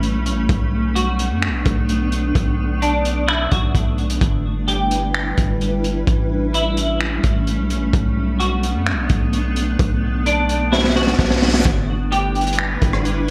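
Atmospheric cloud-rap hip hop with an ethereal, hazy mood, moving in a half-time feel and cut from a longer piece. A granular cloud pad holds sustained chords throughout, its blurred, detuned texture drifting under built-in reverb and sidechain pumping, while a deep, sine-like 808-style bass sits up front with long, decaying notes. The crunchy breakbeat kit is gritty and saturated with a rolled-off top, mixing punchy kick, snare, hi-hat, rim clicks and finger snaps inside gated reverb. From 1.0 seconds a clean, picked semi-hollow electric guitar carries the melody through ensemble chorus, a low-pass filter and delay, playing until 12.6 seconds. A drum fill and a brief electronic reverse cymbal in the background lead into a new section at 11.7 seconds, all framed by light small-room ambience and bright 1980s-style digital production.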